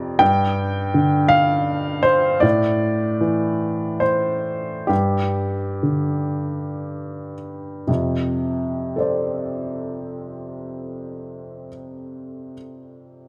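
An upright piano plays alone from start to finish in this short neoclassical minimalist passage, its woody, intimate tone placed up front and captured by close, detailed microphones that pick up audible action noise. The mood is hopeful and peaceful, in F major and 3/4 time, with a rubato feel and a tempo that moves between 56 and 82 BPM. The playing spans from F2 to G5, and the long sustain of the vintage-sounding instrument lets its smooth notes ring into a light reverb. The harmony moves through G5, Am and back to G5 before reaching F6 at 7.9 seconds, where a new section begins after the music slows down between 1.3 and 7.9 seconds. The recording is cut from a longer piece and ends at 13.3 seconds.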